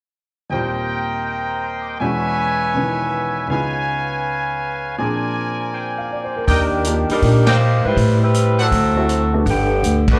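Heard as a live club gig through the venue's PA, with club reverb, this short excerpt of energetic big band swing runs at 161 BPM, opening on a warm, natural baby grand piano and tight, bright trumpet stabs carrying a light vibrato and slapback echo. At 6.5 seconds a dark, vintage saxophone section takes the melody with its own slapback echo, joined by a woody, growly pizzicato upright bass sitting up front and a vintage kit with dark cymbals and a punchy kick. A band accent lands at 7.4 seconds as the chords move through Ebmaj7, Am9 and D9 toward Gadd9.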